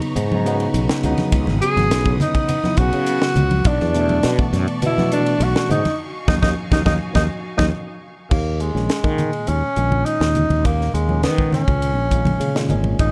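A mellow tenor saxophone carries the melody in this funky, slick excerpt of electric jazz fusion, entering at 1.6 s with a distant, roomy jazz tone that still sits up front. A growly, direct fretless bass and a crisp, airy drum kit with a high-tuned snare and a punchy kick drive a straight 4/4 groove at 103 BPM, while ringing congas played with hard hands add color in the background. A worn, slightly out-of-tune tine electric piano, lightly overdriven and heard through built-in speakers, supplies the accompaniment, and a lush, bowed string section with vibrato holds sustained chords until 8.3 s. The harmony moves through G#m11, C#m11, Bm11 and D#m11, and a band accent, an electric piano fill and a drum fill close the first section before the music settles on Eb7sus4 at 8.3 s. The production is dark and warm, with light reverb and a small room ambience.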